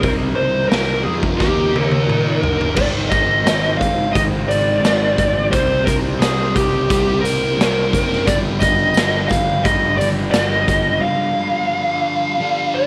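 A dark, hypnotic psychedelic rock groove at 88 BPM opens with an up-front, compressed fuzz lead guitar carrying the melody through tape echo, over a thick, double-tracked fuzz guitar riff with phaser, a warm overdriven bass, a reedy combo organ holding very quiet sustained chords with heavy vibrato, and a punchy, gritty garage drum kit in a bright stone room whose fill at 1.4 seconds leads the Cm7 to Eb7 opening into Abmaj7, back to Cm7 and on to G7, with a jingly tambourine slipping in at 8.3 seconds before the drums stop at 10.8 seconds in this fragment cut from a longer piece.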